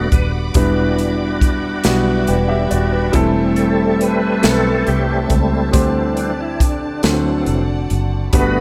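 Slow gospel in 6/8 at 46 BPM, reverent and soulful, this short excerpt from a longer piece features a bright, reedy tonewheel organ as the solo voice, with key click, chorus vibrato and a slow rotary speaker, over chords moving from Gmaj7 through Am7/E to D7sus4 and D7. A warm grand piano accompanies, a round, foam-muted fingered electric bass sits up front, and a lush bowed string section holds high sustained chords softly in the background. A punchy, polished acoustic drum kit with hi-hat, kick and a medium-tuned snare plays from 0.1 s in an airy studio room, and light reverb rounds out the sound.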